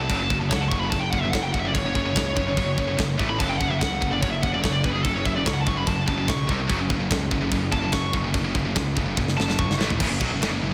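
Relentless and epic, this heavy metal excerpt drives at 146 BPM in F# phrygian, with a distorted, high-gain lead guitar soloing over power-chord shifts between F#5, A5 and C5 until it drops out at 9.7 seconds, its tone touched by slapback echo. Two bright, picked rhythm guitars grind out riffs in the background, one carrying its own slapback, while a growly, fuzz-laden picked bass anchors the low end. An up-front acoustic kit with a tight kick, medium-tuned snare and bright cymbals hammers beneath it all, closing with a drum fill from 9.2 seconds, all set in a lush hall reverb that gives a big arena sound.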